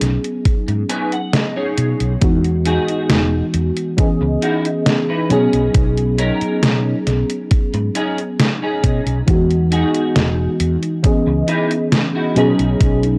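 Vaporwave with a faded, nostalgic mood, where a soft, warbling FM electric piano with analog chorus and tape echo drifts over a dark, round fretless electric bass, a detuned 8-bit drum machine's overdriven hi-hat and snare, and a thumpy overdriven electronic kick, while a bright, twangy clean electric guitar with ensemble chorus and tape echo plays a fill from 0.5 to 2.2 seconds before carrying its riff, all captured in a dry, gritty cassette sound.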